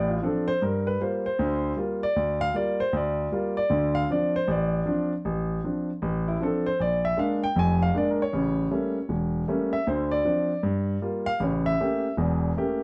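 A concert grand piano plays alone from the first second, a cool, swinging solo jazz passage in D minor at 156 BPM with a lilting swing on the eighth notes, its tone warm, natural and up front with a deep bass. The harmony moves through Dm7 and Gm7, touches Bb7, and leans on a tense A7b9 before settling back home. A short, wet studio ambience surrounds the piano and the top end is softly rolled off, and this 12.8-second passage is cut from a longer piece.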